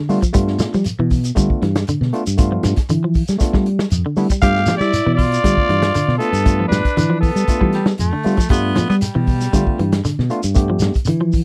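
A growling trumpet takes the melody from 4.4 to 7.9 seconds, its gritty, raspy tone marked by vibrato and scooped notes as it sits up front in this short, joyful afrobeat excerpt at 117 BPM in G mixolydian, resting on a single G9 chord. A bright alto saxophone with light vibrato plays a second line beneath it over the same span, and a raspy baritone saxophone follows with its own clear, punchy second line from 7.7 to 10.0 seconds. Underneath, a clean, picked semi-hollow electric guitar runs arpeggios, while a worn, slightly out-of-tune tine electric piano, lightly overdriven through a combo amp, fills in accompaniment. The fingered electric bass is round, dark and punchy, standing forward with the vintage drum kit, whose punchy kick, medium-tuned snare and hi-hat carry a rolled-off top and a small-room feel, while a grainy, mellow shekere adds compressed texture. The sound is a dry, close 1970s-style studio recording with little reverb, giving the driving groove a tight, intimate presence.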